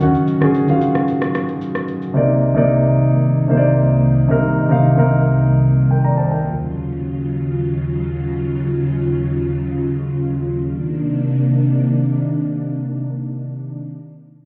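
Amapiano at 112 BPM, soulful and hypnotic, where a dark, deep-bassed concert grand plays mellow up-front accompaniment until 6.6 seconds over vintage sawtooth string-machine violas with soft attack and ensemble chorus holding full-bodied sustained chords through 13.8 seconds, while an overdriven electronic shaker and rim click sound only in the first 2.1 seconds, all heard muffled as if through a wall with club reverb as the harmony moves between Ebm9 and Cm9.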